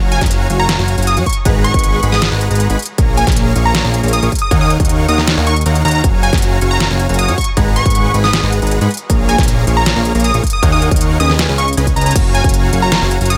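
A huge, detuned supersaw riff pumps beneath a bright, catchy unison lead with delay and a fat analog bass, all three carrying sidechain pumping, while a punchy layered kick and a dubstep kit with a deep snare and crisp hats drive this lush, euphoric half-time future bass drop, which has little reverb and a drum fill at 12.0 seconds.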